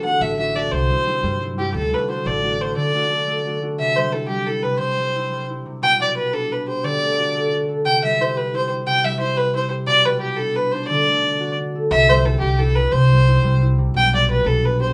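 A lively 6/8 Celtic folk jig at 118 BPM in dotted quarters, with a straight feel, tuned slightly low to A4 = 437 Hz and bright in mood as the chords cycle through D, C and G/B. A single bowed fiddle carries the melody up front with a dark, woody tone and light vibrato, while a fingerpicked concert harp rings out underneath in accompaniment. A warm pizzicato upright bass on steel strings enters at 0.2 seconds, drops out at 2.7 and returns at 11.9, and the whole is set in moderate studio reverb as a cut from a longer piece.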